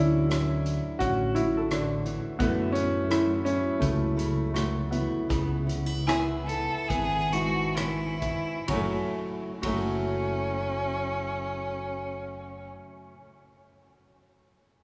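Heartbroken and intimate, this acoustic folk-pop ballad fragment sets a woody upright piano melody over fingerpicked steel-string guitar, a round fretless bass, a loose indie drum kit with a punchy kick and dark cymbals, and ringing background harp arpeggios, with a bright, intense bowed violin entering up front at 6.1 seconds, all bathed in cavernous cathedral reverb as the pace slows from 2.4 to 8.7 seconds.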